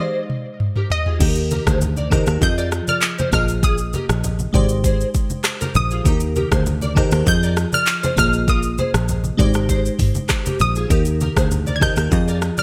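Joyful and sunny, this afrobeats excerpt moves at 99 BPM in a straight 4/4, with a bright 1980s-style digital sheen and light reverb framing the whole mix. A crystalline FM electric piano opens the accompaniment with sparkling, full-bodied chords treated with chorus and phaser, while a fingerpicked nylon-string guitar riff sits alongside it, classical in tone and treated with ensemble chorus and delay. An electronic afro-pop drum kit, up front with a deep kick, gated reverb and warm hats, enters with a fill just after the start, adding handclaps, rim clicks, shaker, toms and crash cymbal. An analog pluck carries the melody from 0.9 seconds, its round, detuned sawtooth tone evolving through a filter sweep with chorus and delay. The punchy, foam-muted fingered electric bass arrives at 1.2 seconds, and low-tuned congas join at 1.5 seconds, close and dry in the background. The harmony cycles through Abmaj7, Eb, Fm7 and Bb7sus4.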